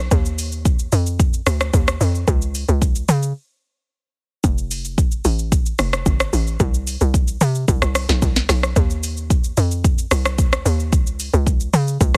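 Dry and heavily compressed, with a radio-like sound, this short cut from a longer amapiano track moves at a relaxed, soulful 111 BPM in a straight 4/4. A tight, punchy FM log drum bass with a noise layer, fast attack and decaying tail sits up front from the first moment, ranging from F1 to Db3. An electronic, tape-warm afro-pop kit of deep kick, sharp snare, metallic hi-hats, rim click and shaker sits equally forward, with a brief break between 3.4 and 4.4 seconds.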